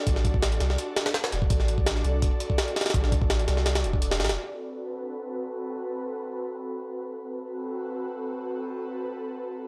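A pitched-up, sampler-style jungle drum kit with a thumpy kick and high-tuned snare drives this atmospheric, frenetic drum and bass cut at 167 BPM in A dorian, its gritty, compressed hits joined by a round, deep dub sub bass until both stop at 4.4 seconds. An airy, breathy pad with a detuned sawtooth edge, a noise layer and chorus holds sustained chords throughout, moving from D to Am69 and carrying on alone to 9.7 seconds. The dry, gritty hardware sound is touched with light digital reverb.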